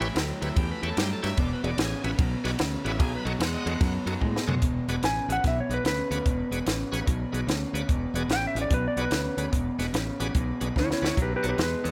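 A rollicking, swaggering electric blues shuffle with a swung eighth-note feel, heard as a fragment cut from a longer piece. A compact cocktail drum kit sits up front with a punchy kick, high-tuned snare and dark cymbals, alongside a round fingered bass, a slightly broken-up guitar riff from a small old amp bathed in spring reverb, and a shouting tonewheel organ turning through a slow rotary speaker. A clean, dark lap steel enters with the slide melody at 5.0 seconds, just after a drum fill marks the change into the second section, with another fill arriving at 10.8 seconds.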